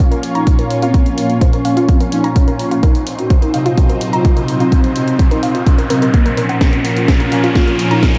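A punchy, tape-warm electronic kick sits up front with a cracking house snare and hi-hat, while a lush, detuned unison pad, bold brassy synth stabs and a smooth, warbling portamento lead with vibrato open this melancholic, dark melodic techno build-up, the lead, stabs and pad all pumping to the sidechain. A woody, nasal wave-folded pluck with 12-bit grit spins arpeggios through diffuse ambient delay, a swarming, very quiet granular drone creeps in at 0.6 seconds, and an electronic riser climbs from 2.5 seconds as the harmony moves from Bbm to Cdim and back. Filter sweeps run on the lead and polysynth throughout, a drum fill arrives at 6.6 seconds, and a cathedral-like reverb soaks the whole mix in a dreamy haze.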